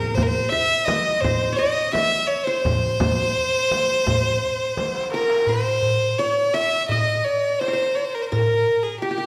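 Bathed in the wet reverb of a recital hall, this festive, passionate Arabic maqam ensemble excerpt puts a rich, close, single-player violin up front, carrying the melody with light vibrato and an airy, soft-attacked sul tasto tone, while a bright-edged qanun played with fingerpicks adds a quieter second line, a crisp metal-shelled darbuka sounds distant throughout, and a deep frame drum plays until 4.9 seconds before a drum fill leads into a new section at 5.5 seconds.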